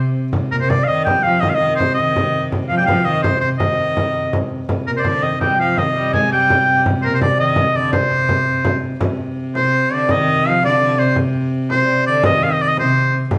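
A driving 6/8 pulse at 111 BPM propels this ancient-sounding medieval dance in C minor, with a deep, dry frame drum played with soft hands carrying the beat, a bright, up-front shawm singing the folk-style melody with scooped notes, a distant, reedy viola da gamba with a gut-string tone holding a low C drone from the start, a second, intimate gamba with an airy bow tracing a lower line, and a metallic, vintage-toned vibraphone with medium motor vibrato sitting in the background, as the band plays live in one room with a large studio reverb in this excerpt cut from a longer piece.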